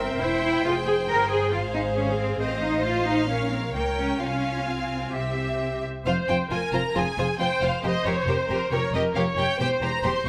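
A lush cello section stands out in this urgent, stormy string-orchestra passage in a quick classical-period style, its smooth, even bowed tone carrying the bass line with plenty of vibrato. Above it, a distant, focused violin section carries the melody, while a closer violin section plays a second line and a rich viola section supplies the accompaniment. Underneath, a dark double bass section also plays the bass with a soft attack, expressive portamento and a smooth top. The harmony moves through restless chords in F minor in a straight four-beat pulse, and a second section arrives at 6.1 seconds. A moderate scoring-stage reverb gives the ensemble a sense of space, and the passage is cut from a longer piece.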